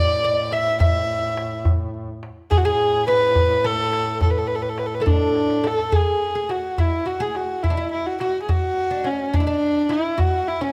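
A bowed kamancheh leads this passionate Persian modal excerpt in A dastgah mahur, its intimate, airy tone sitting up front with soft attacks, vibrato and sliding portamento as it carries the melody at an unhurried 70 BPM in a straight 6/8. Beneath it, a fretless oud plays a quieter second line in the same register, its plectrum-plucked double strings sounding woody and acoustic. A solo duduk holds a low A drone from the start, distant and roomy, with scooped notes in a folk style, until it falls away at 6.0 seconds. The tombak joins at 0.2 seconds with a tight sound from soft hands, and it plays a fill at 5.4 seconds that leads into a second section. Close, detailed microphones capture the ensemble, while a moderate recital hall reverb gives the whole a gently glowing space.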